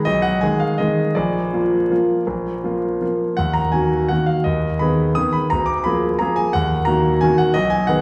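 A bright, polished concert grand piano plays alone from the first moment, carrying a wistful, nostalgic classical waltz in Eb minor at 159-186 BPM in 3/4. The rubato phrasing breathes through harmonies that settle on Eb minor, and the piano's deep bass reaches down to Bb1 beneath lines that extend up to Eb6. A wet recital hall reverb and vinyl crackle place the listener further back in the room, and the 8-second passage is cut from a longer piece.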